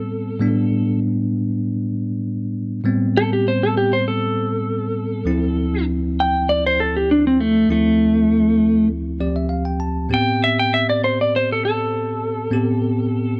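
Soulful and smoky, this straight 99 BPM blues in A minor sets a clean, compressed lap steel guitar, played with fingerpicks, slide and volume swells, up front on a slide solo over a bright, bell-like tine electric piano that fills from 8.9 to 10.1 seconds, moving from Am7 to Dm7 and back in a dry, close 1970s-style studio sound with digital ambience.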